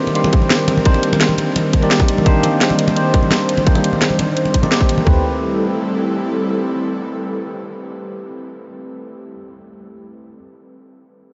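Liquid drum and bass at 171 BPM in A minor, lush and dreamy, set in a reverb-soaked mix with a huge ambient tail and a softened top end. A bell-like electric piano, heard up front through phaser, tape echo and a swept low-pass filter, plays over an airy, breathy pad with chorus and sidechain pumping, while congas sit in the background. Overdriven electronic drums with a tight kick, toms, a cracking snare and bright hats drive the opening until about 5.2 seconds, as the harmony moves from Cm7 to Am7 at 5.1 seconds and the piano carries on until 10.4 seconds.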